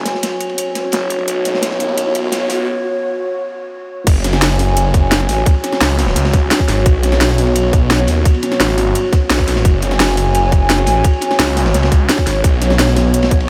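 A dreamy, reverb-soaked mix with a huge ambient space frames this dark, aggressive slice of technical drum and bass at 172 BPM, which opens on a filtered build-up where a moody, detuned analog pad with chorus and sidechain pumping holds sustained chords over a snarling, growling saw bass, distorted and tube-saturated up front. From the very start a layered electronic kit with a cracking snare and bright hats drives along, plus a gritty, rolled-off breakbeat kit with dark cymbals sitting in the background, while a very quiet riser rises from 0.5 s and a brief break follows. At 4.1 s the drop hits with a tight, overdriven electronic kick. The harmony moves between F#5 and B chords with added and suspended colours, giving the track a brooding, relentless pull.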